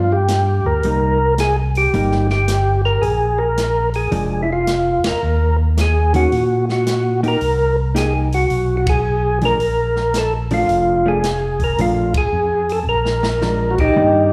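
Swinging and bluesy, this short soul jazz organ trio cut, captured live through a club's sound system with a touch of room reverb, puts a mellow, round percussive tonewheel organ up front on the melody, turning through a slow rotary speaker with slapback echo. Beneath it, a dark, compressed hollow-body jazz guitar plays accompaniment with its own slapback, while a fat, lightly overdriven tonewheel organ with chorus vibrato carries the bass line. An acoustic drum kit with dark cymbals and a boomy kick swings underneath, joining the band on accents at 4.9, 8.8 and 12.1 seconds before a short fill near the end.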